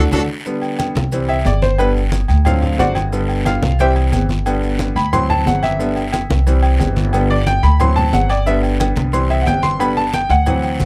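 A brisk straight 4/4 salsa groove at 180 BPM drives this sunny, danceable fragment in G major, cut from a longer piece. It opens with a band accent before the upright piano takes a solo from 0.5 seconds, cycling through G, C and D7 changes. The piano sits up front with a brilliant, worn, slightly detuned character, its action noise audible and its tone intimate and woody. Beneath it, the pizzicato upright bass on gut strings is dark and thumpy, also close to the listener. Congas with a thin skin and hard hands sit in the background, while ringing metal-shell timbales and agogo bells, a raspy, dry guiro and grainy, mellow maracas fill out the percussion. Light reverb and close, detailed microphones keep the sound intimate and clear.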